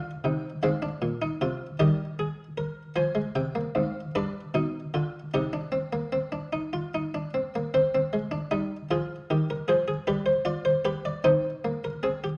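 A buff-stop harpsichord carries this baroque-style four-part fugue in C minor by itself, its muted, lute-like pluck sitting close-miked and up front with a full, dry body. Despite the minor key, the mood is joyful and elegant, moving in a straight 6/8 at 51 BPM counted in dotted quarters, with the tuning set at A4 = 443 Hz. The voices span from G2 up to Ab5, weaving through a progression that circles from Cm through Fm, Ebadd11 and G7 before resolving home to Cm. A new passage begins at 7.7 s and returns to the same Fm, G7 and Cm motion before the cut at 12.4 s, as this is a fragment lifted from a longer piece. Around the instrument, a moderate stone room adds reverb, while the sound of worn, old cassette tape lends a warbly pitch drift to the whole recording.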